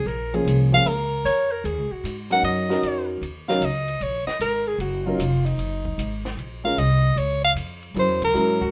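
A live, one-room sound with moderate studio reverb frames this moody, late-night cut of small-group swing and bop at 152 BPM in 4/4, moving from Bbm7 to Ebm7, back to Bbm and on to Gb7 before a band accent at 8.1 seconds. A breathy soprano saxophone carries the melody from 0.7 seconds with light vibrato, subtone and scooped notes, while a smooth-topped alto saxophone plays a second line until 6.2 seconds. Underneath, a woody pizzicato upright bass with steel strings sits up front, a mellow vintage grand piano supplies accompaniment, and a compact cocktail drum kit stays dry with dark cymbals, a high-tuned snare and a tight kick.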